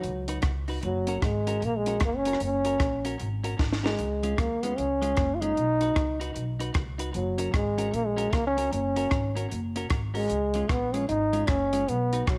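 With studio ambience, this cheerful, joyful ska excerpt with a swung lilt features an up-front dark trombone melody with light vibrato and scooped notes over woody pizzicato upright bass, a dry compact cocktail drum kit with a high-tuned snare, punchy kick and a fill at 3.6 seconds, and twangy, compressed clean electric guitar with slapback echo, while very quiet, hollow group handclaps join at 10.7 seconds.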